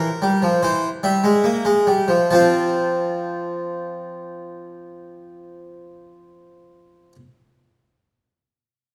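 A close, plucked French-style harpsichord with two sets of strings opens this solemn, serious baroque-style two-part invention, its full tone sitting up front and spanning E3 to A5 in straight 4/4 at 66 to 78 BPM, tuned to A4 = 436 Hz. The first passage eases its pace over a rootless C7 until a second passage begins on F at 2.3 seconds. The instrument's own dry sound is set in a recital hall with a 1.8-second reverb tail, and this fragment, cut from a longer piece, stops at 7.2 seconds.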